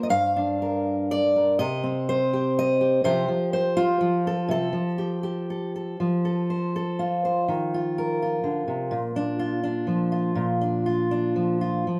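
Folk for solo fingerpicked steel-string acoustic guitar, up front with an auditorium body and light reverb, drifts in rubato 3/4 around 115-128 BPM in Bb major, its hopeful, pastoral mood moving from Gm7 and Cm through Fadd9/C, then at 6.0 seconds turning to F, Ebsus2 and Bb in this short excerpt from a longer piece.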